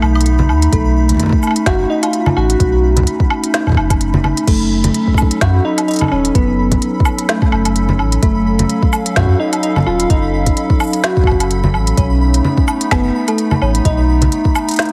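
A heavily compressed, radio-like sound with light reverb frames this intricate, glitchy IDM excerpt at 128 BPM in F# melodic minor, swung on the sixteenths and moving between B7 and F#m6. A soft, round FM lead with chorus, vibrato and digital delay carries the melody over a warbling, nostalgic square-and-triangle pad that pumps against the beat, while a deep sine sub bass with tube saturation sits up front. An overdriven kit of woody snare, smooth hats, cabasa, congas, woodblock and crash is joined at 0.7 seconds by a soft, overdriven electronic kick, and a faint, tempo-synced pulsing texture hovers high above.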